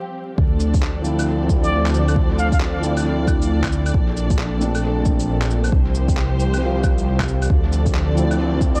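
Swung sixteenth-note grooves drive this rainy, wistful future garage excerpt, where a deep, layered electronic kick and muffled, pitched-down cabasa, shaker, handclaps and claves with analog delay sit alongside a menacing detuned saw bass that enters at 0.4 seconds with a filter swell and sidechain pumping, while a dark felt-muted upright piano with audible action noise and dub echo and a lush, vibrato-rich symphonic string section both pulse with sidechain pumping from the start, a bright plunger-muted trumpet adds a brief wah-wah phrase with dub echo at 1.6 seconds, and vinyl crackle and an echo-heavy small-room mix frame the Dm7, Bbmaj7 and Csus4 changes.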